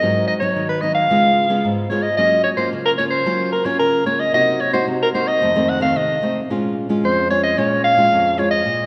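Samba in Bb minor at 111 BPM in a straight 4/4, lively and nostalgic, this brief passage is cut from a longer piece. A breathy soprano saxophone carries the melody up front in a vintage jazz style, with vibrato and scooped notes. A full-bodied nylon-string guitar accompanies it throughout the 8.9 seconds, fingerpicked in a classical manner, with audible finger squeak. The harmony moves through Abm7, Db7, Gbmaj7, Cm7b5 and F7 before settling on Bbm7. Both instruments sit in a concert hall with a long, wet reverb of about 2.2 seconds.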